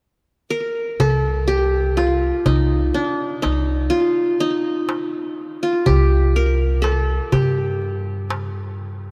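In a straight 10/8 at 123 eighth-note beats per minute, this longing, soulful Turkish makam excerpt opens with a plectrum-plucked qanun at 0.5 s, its bright-edged triple strings carrying the melody up front with a slapback echo. At 1.0 s a woody, dark pizzicato upright bass on gut strings joins with thumpy low notes, while a crisp metal-shell darbuka struck with hard hands sits close and dry beneath. The ensemble rings out in a vast, echoing cathedral-like space.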